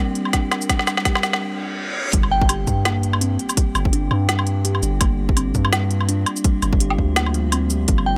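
Cinematic and heavy, this half-time drum and bass excerpt opens with a build-up in which a woody, hollow kalimba spins dark arpeggios through a low-pass filter sweep and digital delay, over a very quiet, moody analog pad and an eerie, metallic drone warbling with chorus and phaser in the background. A drum fill from the organic electronic kit and a hard-clipped kick leads into a brief break, where the pad drops out at 1.4 seconds and a reverse cymbal rises. The drop lands at 2.1 seconds with an electronic impact and a deep, sine-toned 808-style bass that sustains long and decays, sitting up front with the drums. The tape-warm kit, re-recorded in a small room, brings a crisp hi-hat, shaker, woodblock and a woody snare with a swung, half-time feel. A glassy, crystalline FM bell with chorus, tremolo and delay chimes a single high note briefly after the drop and again at the very end, all within a light reverb.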